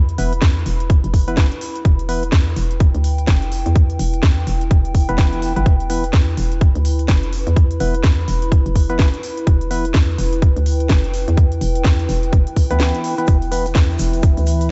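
A dark, warm, close-sounding mix with little reverb and a top end that stops short of 8 kHz frames this gritty, bouncy bass house passage at 126 BPM in E phrygian, swung on the sixteenths and cut from a longer piece. Up front, a tight, tape-warm electronic kick drives the groove alongside a hollow, knocking FM bass with a fast, punchy attack, tube saturation and sidechain pumping. A garage kit adds a cracking snare and crisp hats, while a mellow, organ-like stab with chorus, cassette grit and dub echo punctuates the beat above a warbling, nostalgic lo-fi pad that breathes with the pump. The kick drops out at 12.8 seconds, a grainy, bright egg shaker slips in quietly in the background at 13.3 seconds, and a deep, moody analog pad with phaser and 12-bit sampler crunch rises in at 13.7 seconds to close the passage.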